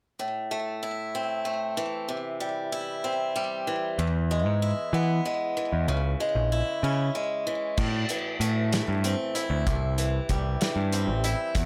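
A lightly reverberant, up-front sound carries this dark, cathartic quiet-loud alternative rock excerpt at 63 BPM in 6/8 and A minor: a bright, boxy picked acoustic guitar with slapback echo plays swing-style arpeggios over Am, C, E and C#m from 0.2 seconds, a growling, overdriven electric bass joins at 4.0 seconds, and a loose indie drum kit with a punchy kick, medium-tuned snare, dark cymbals and a pumping room sound enters at 7.8 seconds as a new section begins.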